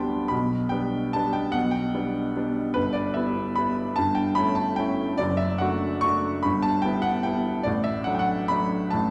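Playful and graceful, this short classical piano waltz in D major moves in 3/4 at 146 BPM, its uneven beats and rubato giving the pulse a lilting, elastic feel. A bright baby grand piano plays alone for the full 9.1 seconds, spanning from D1 up to C#6 with a brilliant, natural tone and long sustain that sits up front. The harmony drifts through inverted chords, opening on G/B at 0.3 seconds and passing through Em/G and A7/G to D/F#, then returning to Em/G before settling on D/A at 7.7 seconds. A wet recital hall reverb with a 1.5-second decay places the listener further back in the room, letting the instrument's ringing notes bloom into the space. Cut from a longer piece, the passage captures a single flowing section of an elegant dance.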